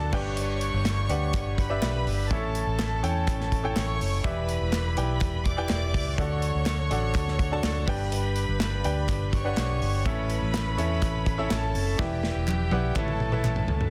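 An uplifting, warm piano-driven pop excerpt opens with a clear, open concert grand piano up front over a round, punchy muted electric bass, a dark, smooth drum kit with a tight kick and biting violins bowing a distant second line, with crisp, compressed handclaps soon joining in the background, moving through G, A, Em7 and D before a drum fill at 12.0 seconds lands on Aadd9 in a dense, heavily limited small-room mix.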